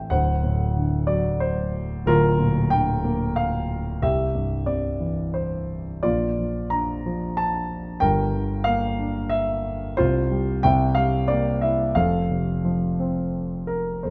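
Sunny and hopeful, this short classical excerpt for solo piano unfolds in F major at 92 BPM in 3/4, its lyrical line shaped with a flexible rubato feel. A dark concert grand carries everything alone from the first moment to 14.1 seconds, its mellow, smooth tone resting on a deep bass that reaches down to D1, while its range extends as high as Bb5. The instrument has a vintage character with a short sustain, and it sits up front in the sound, captured by close, detailed microphones with a light touch of reverb. The harmony moves from D7 through Gm7/D, C and Bb before a Gm7 leads to a Csus4 that resolves to C7 at 10.6 seconds, settling on F at 12.0 seconds. Cut from a longer piece, the passage feels like one phrase coming home to rest.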